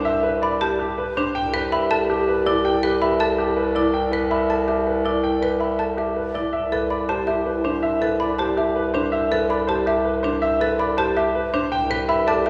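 A clear, long-sustaining baby grand piano carries the melody up front from the start, over bright, woody marimba arpeggios struck with hard mallets and a soft-attack bass clarinet that holds a roomy low C beneath them, all cycling through a single Cmaj13 chord in 7/8. At 0.4 seconds a dry xylophone played with soft rubber mallets adds higher arpeggios. A hollow, airy alto flute with vibrato drifts in the background at 1.4, 6.5 and 11.7 seconds, all within a lingering church reverb that gives this minimalist pattern music a bright, hypnotic glow.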